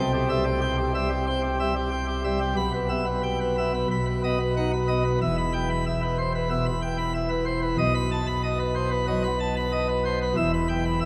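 A solo pipe organ on full plenum, with mixtures drawn, dominates this fragment of a dramatic, majestic baroque-style toccata in straight 4/4 time. Its brilliant voicing and crisp chiff sit up front, spanning from a deep E1 to B5 at the top. The harmony opens on C, moves through Em/B and settles on B. At 5.2 seconds a second section begins on E minor, passes through B7 and returns home to E minor at 10.4 seconds. Surrounding it all is a drenched cathedral reverb with a decay of about 6.8 seconds, which makes the full sound feel vast and ceremonial.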